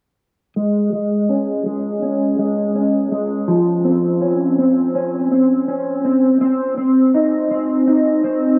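Dream pop with a hazy, melancholic mood, this short cut features a lone fingered electric guitar through a small old amp, dark and slightly broken-up, up front with analog chorus, low-pass filtering, digital delay and a filter sweep, playing from 0.6 to 8.6 seconds over Absus4, Dbmaj7/F and Cm inside a huge ambient reverb.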